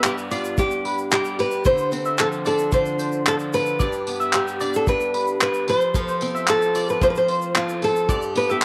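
Acoustic pop with a sunny, easy-going mood at 112 BPM in G mixolydian, cut from a longer piece, where an up-front fingerpicked flamenco guitar carries the melody with slapback echo over a boxy parlour-style picked steel-string acoustic guitar, twangy slightly broken-up electric guitar arpeggios through analog chorus, a cloth-damped thuddy drum kit with a tight kick, handclaps and tambourine, and a grainy egg shaker in the background, all set in moderate spring reverb as the chords move from G through Dm7 and F back to G.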